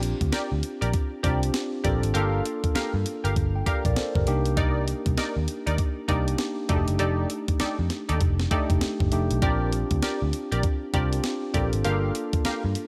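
New jack swing R&B with a bouncy, upbeat mood and a swung sixteenth-note feel, moving through Bb6, Gm7, Cm9 and F13 in this short cut from a longer piece. An up-front, sampler-style 12-bit drum machine with a thumpy kick, medium-tuned snare and hi-hat sits beside a dark, round, foam-muted picked electric bass and a clean tine electric piano heard through its built-in speakers. From 0.3 seconds a punchy, detuned sawtooth polysynth adds funky filter-plucked stabs, warbling with chorus and tape echo, and the mix has a dry, close sound.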